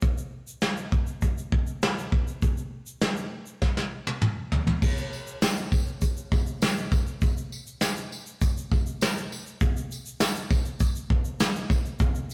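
A rough rehearsal-room sound with warm saturation and a moderate stone-room reverb wraps this heartfelt, carefree pop fragment in straight 4/4. Up front, a soft brush drum kit sets a dark, smooth tone with a rolled-off top, its tight kick, medium-tuned snare, toms, shaker and crash cymbal closing the opening passage with a drum fill from 3.6 to 4.8 seconds. A jingly tambourine, close and dry, joins quietly in the background at 5.1 seconds and stays for the rest.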